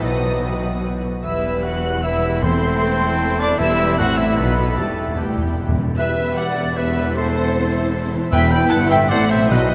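An urgent, stormy fragment of a fast romantic orchestral movement in E minor opens at once with strings, winds, brass and harp, flowing in a rubato 3/4 at 152 BPM. Violins carry the melody up to F#6 with light vibrato, while a second violin line, a hollow, airy flute section and a solo oboe with a smooth top weave supporting lines beneath. Lush violas with portamento and soft attacks fill the middle, dark distant horns hold sustained chords, a mellow trumpet adds background stabs, and a very quiet concert harp rings out fingerpicked arpeggios. Cellos and double basses anchor the low end with bowed, vibrato-rich tone. Close, dry timpani with medium mallets enter at 2.4 seconds, play a fill from 4.8 seconds, and return at 8.3 seconds as the harmony circles between E minor, A minor and B7. The whole orchestra sits in a vast, echoing cathedral-like space with a long, wet reverb tail.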